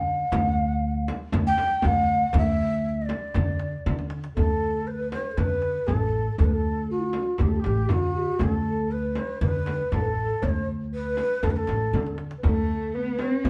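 A breathy, mellow ney sings the melody over thumpy pizzicato upright bass from the very start of this festive, stately Arabic maqam ensemble piece, joined almost at once by a deep, saturated frame drum and a clay-shelled darbuka set back in the mix, with short drum fills, an airy bass ocarina adding a soft background second line from 4.4 seconds, and a dark, woody bowed cello entering up front at 12.4 seconds, the band heard live in a moderately reverberant stone room.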